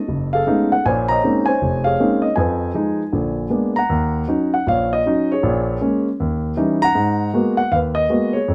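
Solo jazz in a moody, late-night vein, this brief cut from a longer piece swings at 157 BPM in 4/4 as a concert grand piano, up front with a deep bass and short sustain in light reverb, moves through rich minor harmonies like Bbm11 and Fm7b5 in Bb minor before shifting to Eb minor at 3.9 s and settling on Abm9 by 7.0 s.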